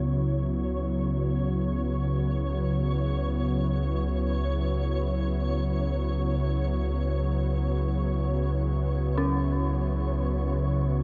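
A deep, rumbling drone sits up front in this ominous, vast dark ambient excerpt, joined throughout by an evolving, airy pad of sustained chords with chorus and a filter swell. An eerie, inharmonic synth bell with chorus plays arpeggios above, while a flickering, grainy texture fades in across the full 11.0 seconds. The whole is soaked in a huge reverb and carries a cassette-tape character.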